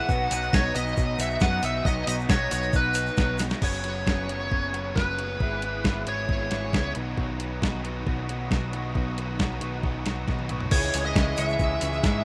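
Wistful and jangly, this indie rock excerpt moves at 136 BPM in a straight 4/4, settled in B major with chords that drift from B through F#sus4 and E/G# to Badd9 before landing on C#madd9. A crisp 8-bit digital drum machine sits up front with a thumpy kick, medium-tuned snare, hi-hat, toms and crash, adding fills at 3.4 seconds and again just before the return of the opening material at 10.7 seconds. Beneath it, a round, dark picked electric bass holds the low end, while a raw garage guitar with overdrive and a crunchy, bright guitar treated with ensemble chorus play riffs further back in the mix. A smooth, overdriven lead guitar carries the melody up front through tape echo, joined at the start and the close by a ringing, bell-like glockenspiel played with soft plastic mallets, also echoed, along with a grainy egg shaker. An airy, breathy pad with chorus sustains soft chords in the background, dropping out through the middle before returning, and the whole piece has the rough, dry character of a home demo with little reverb.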